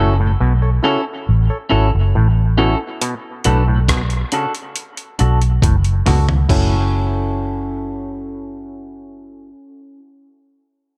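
A dark, round fingered electric bass sits up front in this deep, heavy dub reggae passage, its foam-muted, punchy tone anchoring a slow, straight groove over a minor-seventh chord sequence. The opening is a break, with a filter sweep running across the first section as a twangy, compressed clean electric guitar, a hollow, chorused organ stab and a stringy, overdriven clav through a combo amp all trail off into dub echo behind low-pass filtering, the clav also shaped by auto-wah. At 3.0 seconds a gritty, sampler-style soul drum kit arrives with a thumpy kick, hi-hat, rim click and crash cymbal, and a tom fill closes out its short stay before it drops away at 6.7 seconds. From there the bass, organ and guitar carry on into a sparser second section, the guitar ringing on alone at the close. The sound is dry and close, cut from a longer piece.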